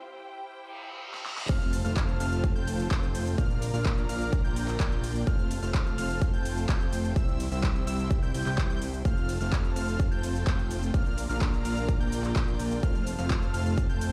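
Festival progressive house at 127 BPM in F major, euphoric and anthemic, this cut from a longer track opens with a brief build-up where a lush, clear string section holds sustained chords under a filter sweep, a reverse cymbal rises in the background and the big-room drum kit enters with a fill at 1.1 seconds. The drop lands at 1.5 seconds with an impact, a punchy overdriven kick up front, a huge snare with metallic hats, handclaps and cabasa, a fat analog bass, a dense detuned supersaw riff with 12-bit sampler grit, and a catchy plucky unison lead playing high arpeggios, with sidechain pumping on the strings, bass, supersaw and lead and dub echo on the lead and supersaw. The chords move from C to F, Bb and back, and the whole mix sounds as if it is played on a big sound system in a bare stone room.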